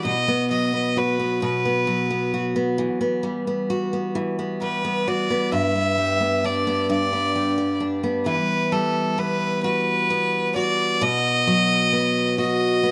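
A picked steel-string acoustic guitar opens this slow, melancholic pop passage in E minor, moving at 44 BPM in a straight 6/8 with an auditorium-like resonance. A bright, nasal violin joins at 0.1 seconds, its single player drawing an airy, earthy bowed melody with light vibrato, both instruments sitting up front in a light reverb. The aching mood deepens as the harmony moves from B5 through G to B, with a new section arriving at 8.3 seconds before the fragment is cut off.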